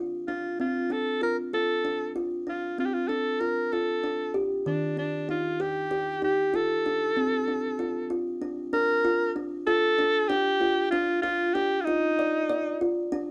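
A dark, lightly reverberant production frames this playful, shimmering excerpt of contemporary chamber music in 7/8 at 192 BPM in eighths, where a woody, hollow-toned kalimba thumb-plucks ringing arpeggios from 0.0 to 13.3 seconds beneath an up-front, punchy alto saxophone solo with vibrato, a smooth top and a forceful pop-style edge, carrying the melody over chords moving from F5 through Ebmaj7 and F to Dm as the music shifts into a new section at 8.7 seconds.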